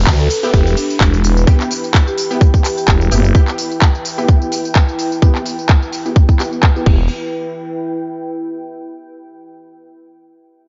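Dark, warm and lightly reverberant in a digital ambience, this bouncy, swaggering bass house excerpt with swung sixteenths sets a tight, overdriven electronic kick up front with a crisp-hatted dance kit of handclaps, tambourine and crash, beneath a thick, growling FM bass that drops out at 3.3 seconds before a brief return, while a bold, detuned orchestra-hit-like synth stab with a filter sweep and phaser pumps alongside a deep, moody ambient pad, a dry, close-miked marimba and a downlifter sit in the background, and the pad carries on alone after 7.1 seconds.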